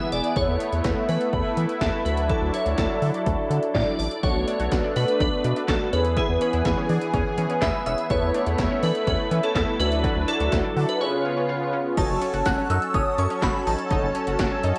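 A cassette-worn home recording with a moderate spring reverb gives this driving, melancholic synth-pop excerpt at 124 BPM its hazy, lo-fi glow, as a shimmering FM bell carries the melody over mellow, brassy synth brass with phaser and a lush, airy unison pad. Beneath them, a round, deep analog bass and punchy 80s electronic pad drums with a gated snare and metallic hats sit up front, while a warbling analog pluck joins at 4.2 seconds with arpeggios in the background. Chords move through Asus2/E, Dadd9, Bm7 and E before a silent gap at 11.0 seconds gives way to a new section on F#m at 12.0 seconds.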